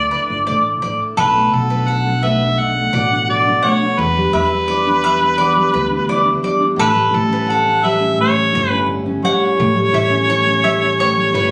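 Captured on a phone in a compressed club room, this carefree, heartfelt acoustic pop fragment puts a mellow harmonica up front, singing the melody with light vibrato, scooped notes and plate reverb, over a dark fingerpicked steel-string acoustic guitar, double-strung bowl-back mandolin arpeggios and a woody, growly pizzicato upright bass, with the chords moving through Bm7, Em7 and A7 after 1.2 seconds.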